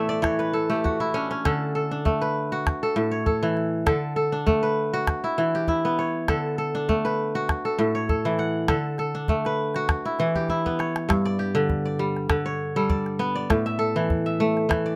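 Joyful and warm, this short cut from a longer West African traditional piece pairs kora with calabash in 4/4 at 100 BPM, with a gentle swing on the sixteenths. The kora leads with bright, fingerpicked arpeggios that ring out crisp and up front across a broad span from G2 to F#5, opening with a brief fill in the first 1.4 seconds before settling into a cycling progression through A, D and Em. The small calabash sits just beneath it, close and dry, keeping the percussion steady throughout. Around 10.3 seconds the calabash plays a short fill that sets up a change at 11.1 seconds, where the harmony moves to G and then A5 for the closing stretch. Recorded with close, detailed microphones and little reverb, the sound is intimate and clear, letting every plucked note and percussive stroke come through.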